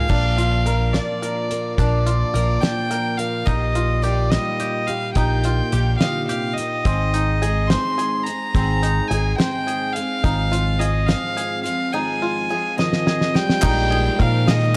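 In a straight 6/8 at 71 BPM, this hopeful indie folk excerpt in Bb mixolydian builds around a reedy, nasal fiddle melody with digital delay over a shimmering twelve-string guitar, twangy banjo arpeggios, a round, punchy electric bass, a fingerpicked jumbo steel-string guitar that drops out at 6.9 s, and a cloth-damped, thuddy drum kit with a fat snare, until a drum fill leads at 13.6 s into a Bb7sus4 section where a woody upright piano and crisp group handclaps join a distant, mellow French horn that entered at 12.8 s, all in a dark, warm production with light small-room ambience.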